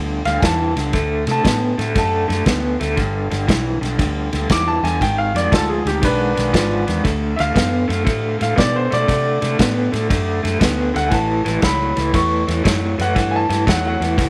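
Soulful and swaggering, this electric blues shuffle rolls along at 118 BPM in 4/4 with a swing on the eighth notes, cut from a longer piece. An electric guitar through a small old amp carries the riff from the first moment, its tone slightly broken-up, picked and lo-fi, compressed and up front, with a tremolo effect adding shimmer. Beneath it, a vintage muted fingered electric bass sits dark and round, its foam-muted notes giving the groove a soft, thick bottom. From 0.3 seconds a concert grand piano fills in the accompaniment high in its range, intimate and polished with long sustain and audible action noise, while a natural country drum kit joins on kick, snare and ride, the kick punchy, the snare medium-tuned and the cymbals dark. The harmony moves from Gsus2 and D through Gadd9 and G#dim7 to a long D7 before landing on A9, all set in a small room with light reverb.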